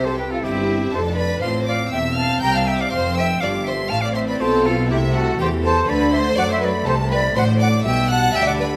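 In a straight 4/4 pulse, this brilliant, lively fragment of a baroque-style concerto movement sets a pure, distant silver concert flute on the melody alongside a high violin section with light vibrato, while a second violin section, soft-attacked and sul tasto, carries a second line, a smooth-topped viola section and an airy, plucked harpsichord sit in the background, and a rich cello section and a dark double bass section with portamento hold the bass, heard within a wet recital hall.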